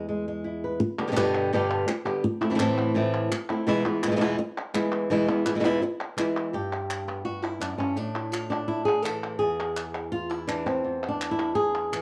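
A straight 4/4 pulse at 167 BPM drives this intense, passionate flamenco excerpt, where an up-front fingerpicked acoustic guitar with audible finger squeak and a cassette-tape grain carries the melody over E, G, Am and E before moving to G and A5, with crisp, band-limited palmas hand claps joining quietly at 1.0 s and the guitar settling into a chordless stretch from 9.4 s, all set in a wet studio reverb with a vintage home-recorded feel.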